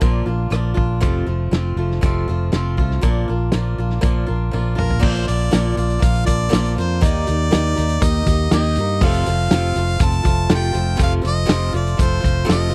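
Folk rock with a heartland rock heart, this short excerpt moves at a steady 120 BPM in a straight 4/4 and carries a warm, nostalgic mood. A loose indie drum kit with a fat snare, punchy kick and a gritty, saturated character drives things along from the start, together with a growly, amped fingered electric bass sitting up front. A picked swing-style acoustic guitar adds a bright, woody, boxy accompaniment with the sound of old strings. During a drum fill around 4.5 seconds, a clear harmonica enters at 4.8 seconds to carry the melody with light vibrato in a present, pop-style solo. The chords move through Bb, F and Eb, and the dry, close recording has a 1970s studio feel with little reverb.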